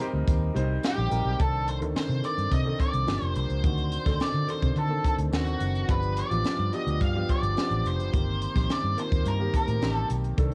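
Urban and bittersweet, this polished 1980s jazz-funk pop excerpt moves at 107 BPM in a straight 4/4 in C dorian, with chords shifting from Cm7 through Gm7 and D7b9 to G7 and Eb6/G. A crisp fusion kit with a high-tuned snare and punchy kick drives it alongside a round, foam-muted fingered bass, while a clear grand piano with audible action noise and a subtle chorus comps underneath and a very quiet, jingly tambourine adds shimmer. Entering at 0.8 s, an up-front octave-fuzz lead guitar carries the melody with a dark, distorted bite, all captured in a modest booth with the soft grit of a home cassette recording.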